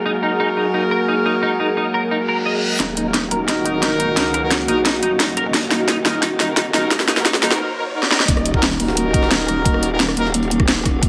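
Overdriven, up-front drum and bass kit with a cracking snare and bright hats drives this dark, aggressive technical drum and bass excerpt at 175 BPM in Eb minor, arriving at 2.8 seconds alongside a knocking electronic kick and a growling, wobbling bass, with a very quiet gritty jungle sampler-style kit joining at the drop at 8.3 seconds, while the opening layers of an eerie metallic drone, stabbing brass ensemble through tape echo, a deep moody ambient pad, clean picked arpeggios on a bright semi-hollow electric guitar, and background reverse cymbal, riser and impact effects build tension within a lush hall reverb.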